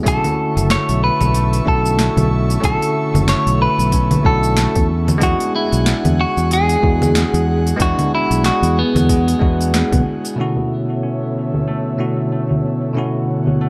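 Dark, lightly reverberant production frames this wistful, relaxed sunset chillout excerpt in B dorian, moving at 93 BPM in 4/4 with a swung sixteenth feel over Bm11 and E9 chords. A bell-like tine electric piano with delay, a very quiet, ringing concert harp playing arpeggios and an airy, detuned pad with chorus fill out the harmony, while a compressed, clean electric guitar with spring reverb and delay carries the melody up front beside a punchy fingered electric bass. A soft, overdriven electronic kick and a smooth R&B kit with a sharp snare, crisp low-passed hats, cabasa and congas drive the groove up to a band accent at 9.7 s, after which the guitar, bass and kick drop out and a filter sweep runs over the harp from 10.4 s as the piano, pad and kit carry on.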